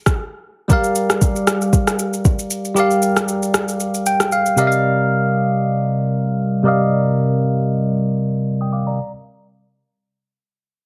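A swung 116 BPM amapiano groove in 4/4 opens the fragment, its soft kick, rim click and shaker coming from an electronic, produced drum kit that sits up front with a small-room character and drops out at 4.8 seconds. In C minor with a deep, soulful mood, a bell-like, bright and clean tine electric piano enters at 0.7 seconds on Gm7 before moving to Cm11, colored by phaser and a low-pass filter sweep, with a fill from 3.8 to 4.8 seconds. Light reverb and a heavily compressed, radio-like sound frame the whole cut.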